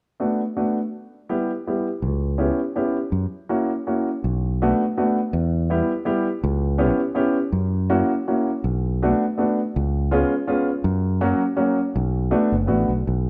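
A dark production with a moderate recital-hall reverb frames this bittersweet, nostalgic musette fragment in B minor at 164 BPM in a swung, rubato 3/4, where a woody, natural upright piano sits up front with the accompaniment from 0.2 seconds and a round, punchy fingered electric bass joins close behind at 2.0 seconds, both carrying a cycle of minor-seventh, half-diminished and dominant chords that settles back on the home chord near 11.9 seconds.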